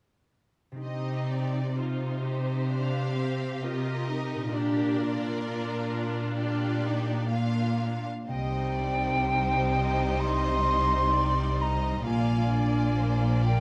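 A pure, expressive flute emerges from a bittersweet, sorrowful cinematic passage in C minor at a slow, rubato 65 BPM, entering at 8.3 seconds with an up-front double bass section and a soft-attack violin melody over ringing harp arpeggios and lush bowed violins, a rich viola section and a cello bass, all moving between C minor and B-flat in a moderate recital hall reverb.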